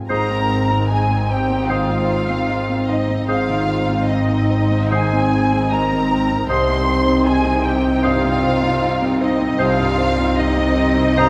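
Moving freely in rubato around 76 BPM in 4/4, this brief, sorrowful cue from a cinematic film score sits in Ab major, resting on an Abadd9 chord before shifting to C minor at 6.5 seconds. A felt-muted upright piano opens at 0.0 seconds alongside the bowed cellos, its soft, intimate tone carrying audible action noise from the background. From 0.1 seconds, con sordino violins carry the veiled, dark melody high in their range with gentle vibrato, while a second violin line and violas fill the middle, joined by a mellow, very quiet French horn section holding sustained chords. A rich, lush double bass section anchors the low end, and the woodwinds add second lines: a clear solo clarinet on one held pitch, a distant flute section with a crisp attack, and a cor anglais on a single note far back in the mix. A wet scoring-stage reverb wraps the ensemble in a soft, enveloping ambience, giving the whole passage a tender, mournful glow.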